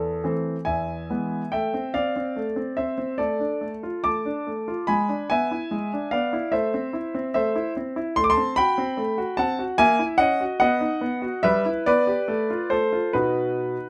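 A close, detailed recording with light reverb places a clear grand piano up front, intimate and polished, with its action noise audible beneath the notes. This restless, dramatic classical-period sonatina in A minor moves at 72 BPM in a straight 2/4, the solo piano ranging from E2 to D6 across a brief opening before a longer second section begins at 1.5 seconds. Its harmony wanders darkly through diminished and dominant-seventh colours, ending unresolved on a B chord at 13.2 seconds as the fragment breaks off from a longer piece.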